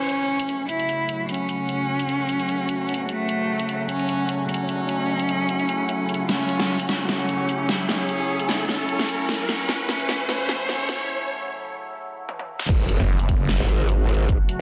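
A rich, expressive bowed cello carries the melody up front, with vibrato and portamento and a touch of delay, over an evolving, warbling wavetable pad on sustained F# minor chords and a background riser as this heavy, aggressive wobble dubstep excerpt builds at 150 BPM in half-time with a slight swing. A layered electronic kit with a huge snare pushes drum fills through the latter part of the build-up, the cello stops at 11.1 seconds for a short break, and at 12.7 seconds the drop lands with an impact, a punchy kick and a growling, wobbling, formant-filtered bass, joined briefly by a snarling detuned saw bass. The mix is dense and heavily limited, set in a lush digital hall.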